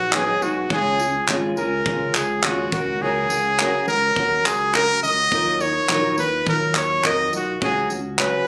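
A straight 4/4 pulse at 104 BPM carries this heartfelt, carefree acoustic pop excerpt in Db mixolydian, where a bright, up-front trumpet sings the melody with light vibrato over a double-tracked, fingerpicked nylon-string guitar, a round, dark fingered electric bass, an acoustic drum kit with handclaps, a punchy kick and tambourine, and a barely audible crisp group handclap entering at 1.3 seconds, all set in a light club reverb with the roomy sound of a phone recording.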